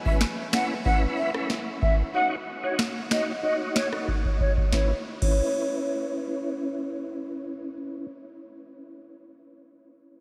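Soaked in a huge, dreamy reverb, this bouncy, tough dancehall cut sets a breathy, unsteady jazz flute melody with soft attack, lifted highs, low-pass filtering and analog delay over a smooth, clean tonewheel organ with key click, chorus vibrato and fast rotary speaker, while a booming analog drum machine re-recorded in a large room drives up front with deep kick, crisp snare, rim click, finger snaps and crash cymbal, a filter sweep running through the opening and a drum fill at 4.1 seconds before the drums stop at 5.4 seconds and the organ carries on alone after the flute ends at 6.6 seconds.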